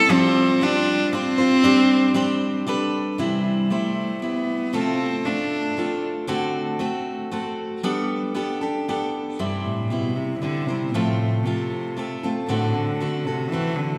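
Pastoral and hopeful, this folk excerpt moves in a steady three-beat metre, cut from a longer piece. A single bowed cello carries the melody up front, played sul tasto with a soft attack, light vibrato and an airy, intimate tone that sits close to the listener. It sings from the start until 6.0 seconds, rests while the guitar carries on by itself, then returns at 9.4 seconds through to the end. Beneath it, a picked steel-string dreadnought guitar keeps up the accompaniment throughout, its warm, up-front sound marked by finger squeak. Suspended and added-tone chords open the passage before it settles onto C and passes through F and D7, all of it bathed in the wet, lingering reverb of a church or concert hall.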